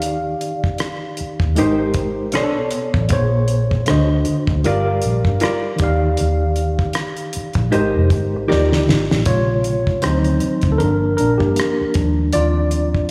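Soulful and smooth, this short neo-soul R&B cut sways with a light swing, built around a worn, slightly out-of-tune tine electric piano that sits up front with gentle overdrive and slapback echo over lush chords like Ebmaj9 and Bm9, backed by a dark, foam-muted fingered electric bass and a dry, damped 70s drum kit with a fat snare, tight kick, rim clicks and hi-hat. A clean, compressed hollow-body jazz guitar adds a picked second line from 1.6 to 8.7 seconds, and after a drum fill the electric piano takes a solo from 9.3 seconds. A lush hall reverb gives the mix a big arena sound blended with small room ambience.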